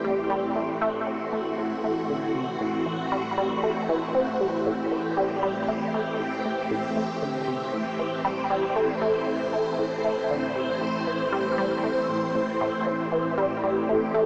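A resonant blip pluck drives this short stretch of ambient, sequencer-driven space music, repeating a juicy, squelchy riff built from detuned sawtooth and triangle tones with ring modulation and a fast-attack filter pluck. Its short decay is carried off by tape echo and phaser, running from the start to 14.2 seconds. Alongside it, a swirling, vintage string machine holds sustained chords through slow attacks, its bright sawtooth tone sitting up front and thickened by ensemble chorus and phaser until 14.3 seconds. The harmony rests on a single Am7 chord in a steady 4/4, giving the piece an expansive, mysterious mood. A huge, wet reverb with a long 7.2-second tail washes over the mix, though the sound itself comes across as if heard through a small speaker. It is cut from a longer piece.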